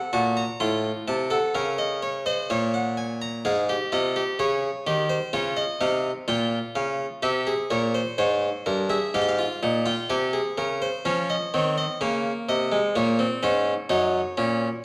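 A straight 4/4 pulse at 63 BPM carries this stately, joyful baroque-style three-part fugue for solo harpsichord, cut from a longer piece, where the plucked, nasal, bright Flemish-style instrument sits up front in a reverberant recital hall, worn, warbling cassette tape with pitch drift coloring the sound as chords moving through Bbm, Fm/Ab and C settle into Db major at 11.0 seconds.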